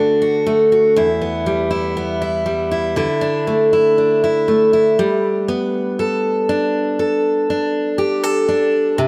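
A lone steel-string acoustic guitar opens this tender, emotional pop passage, its picked notes sounding full-bodied and up front from the very first moment. At a slow 60 BPM in a straight 4/4, the guitar sits in G major, moving from a D chord to E minor at the one-second mark. Around 5.0 seconds the harmony settles onto a Gadd9, opening a new section that carries the excerpt to its cut at 9.1 seconds. The guitar ranges from low E2 up to A4, giving the solo part both a deep foundation and a clear upper voice. A moderate, lush hall reverb with a long 2.4-second tail surrounds the instrument, lending the short fragment a spacious, heartfelt glow.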